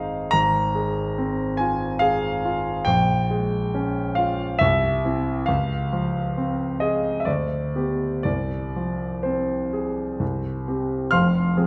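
A warm, polished grand piano sits up front and present, carrying this stormy, passionate romantic character piece entirely on its own from 0.0 to 11.7 seconds. Set in F minor in 3/4, the music moves with a rubato feel at around 59-72 BPM, tuned to A4 = 443 Hz, and ranges from F1 up to F6. The harmony travels from Fm/Ab through Bbm7, C and a lush Dbmaj7 before a darker G/D and Fm/C, reaching a stark C5 at 10.2 seconds and settling on Fm at 11.1 seconds. A wet recital hall reverb with a 1.4-second decay surrounds the instrument, lending the passage a sense of space. This short passage is taken from a longer piece.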